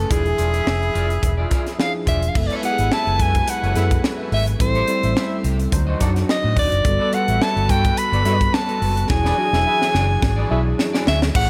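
This short excerpt of polished 1980s jazz-funk pop opens at once with a clear, punchy soprano saxophone carrying the melody up front, over a worn, slightly out-of-tune tine electric piano that runs through a combo amp with light overdrive and lush chorus. A dark, foam-muted fingered bass sits round and up front beside a crisp fusion kit, whose high-tuned snare, punchy kick, hi-hat and crash ring in a small, pumping room at 107 BPM with a gentle sixteenth-note swing. Further back, a slightly broken-up picked electric guitar plays a riff with subtle chorus, while a tight horn section with octave doubling and a smooth top adds a second line. From 2.4 seconds a lush, bowed studio string section enters with sustained chords, as the harmony moves through F#m11, Am7, D7b9 and Gmaj9 before landing on E9. A drum fill from 9.1 seconds carries the urban, glossy groove to the cut, all framed by light reverb.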